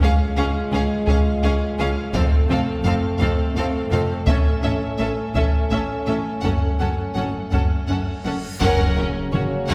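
A triumphant, adventurous stretch of epic orchestral film score in a slow 6/8 at 56 BPM opens with taiko ensemble drums struck with hard sticks under bowed strings: an intense, vibrato-rich first violin melody over a smooth second violin line, clear violas, a focused cello section and clear double basses, with a dark, distant French horn section holding chords through the Db, F, A and Gbm harmonies. At 8.2 seconds a huge reverse cymbal swells into an impact, and at 8.6 seconds the music lands on F# as a tight, bright trombone section and very quiet, articulate timpani with hard mallets join. The whole passage sits back in a wet scoring-stage reverb, heard from further back in the room.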